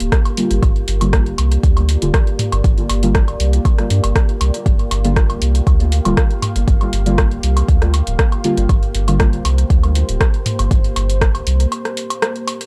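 An up-front, overdriven electronic kick and a round, soft dub sub bass anchor this meditative, hypnotic dub techno excerpt, which rests on a single Gm7 chord, with the bass dropping out at 11.7 s for a brief break. A deep house kit of hi-hat and rim click, also overdriven, sits alongside tape-warm electronic woodblock and toms carrying dub echo, while a dark, wave-folded chord stab with chorus and phaser pulses under sidechain pumping alongside a moody, detuned ambient pad. The dry, gritty hardware sound with transformer saturation gives the groove a close, grainy texture.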